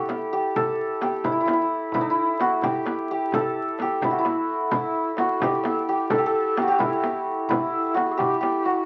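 In a straight 6/8 at 86 BPM counted in dotted quarters, this short cut from a longer Persian modal piece has a soulful, melancholic mood. A shimmering, ringing hammered santur leads the melody up front, backed by a small, close and dry frame drum played with soft hands and a tight tombak sitting in the background. A breathy, bright low ney enters at 4.7 s with a vibrato-laden, slightly unsteady second line, while moderate studio reverb and the crackle of a very old 78 rpm record colour the sound.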